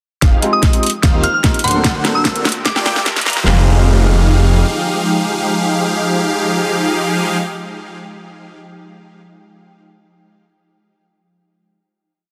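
Emotional and bittersweet, this short future bass piece moves at 148 BPM in a half-time feel in F dorian, opening with a build from 0.2 seconds where a filter sweep opens up huge, bright supersaw chord stabs with phaser and delay over a thick, saturated detuned saw bass and two layered dubstep drum kits with a knocking kick, huge snare, claps and metallic hat rolls, with a very quiet riser joining at 1.4 seconds. Around them, a very quiet lush unison pluck doubles the chords in arpeggios, a soft, warbling FM synth bell sings short phrases with tape echo, a felt-muted upright piano adds mellow rootless chords in the background, and an ethereal airy pad with ensemble chorus enters at 1.0 seconds, several parts pumping to the sidechain. At 3.5 seconds the drums drop away and the piece settles onto a final Fm9 chord, the bass stopping at 4.6 seconds while the pad, piano, pluck and supersaws ring on in a dense, heavily limited master.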